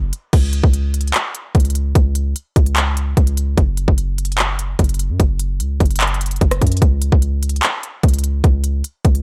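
Hip hop trap at 148 BPM in a half-time 4/4 feel, this short fragment of a longer piece is hard-hitting and dark, opening at 0.0 s with a deep, boomy sine 808-style bass, layered with noise, that strikes fast and decays between F#1 and F#2. From 0.1 s an up-front electronic trap kit joins, with a hard-clipped kick, crisp hi-hats, handclaps, rim clicks and crash cymbal. The sound is dry and gritty, with little reverb.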